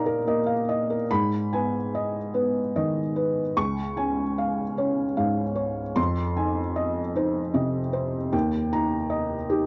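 Neoclassical minimalist piano in a reflective, melancholic mood, this short fragment of a longer piece moves at a rubato 75 BPM in 3/4. A solo felt-muted upright piano plays throughout, soft, mellow and intimate, ranging from Db2 to Db6 and tuned to A4 = 442 Hz, through chords that open on Bbsus4 and turn to Abm at 1.1 seconds before passing through Db and Fm7 to Eb, all captured up front in a dry, close 1970s-style studio sound with light reverb.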